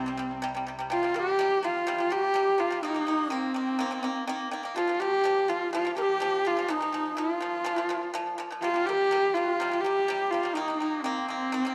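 A husky, up-front horsehead fiddle carries the melody with vibrato and portamento over bright, percussive pipa arpeggios touched by tape echo, while a nasal, earthy bowed double bass drones briefly until 0.9 s. At that point a breathy bamboo xiao enters in the background with a soft-attacked second line, giving this Mongolian folk piece at 124 BPM in straight 4/4 a vast, windswept mood. Harmony moves around C5, Eb5 and Bb5 chords, all set in a moderate echo chamber reverb with studio ambience.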